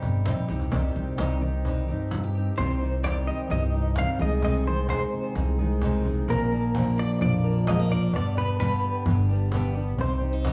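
A home cassette recording with small-room ambience and light reverb carries this bittersweet, wistful indie folk fragment, where a clean, compressed semi-hollow electric guitar with tremolo sings the melody over a boxy, picked old ladder-braced acoustic guitar, a dark, jumbo fingerpicked steel-string acoustic guitar that joins at 0.7 seconds, a woody pizzicato upright bass up front and a snappy cajon played with soft hands, while a grainy tube shaker sits briefly in the background near the start around a drum fill at 0.5 seconds.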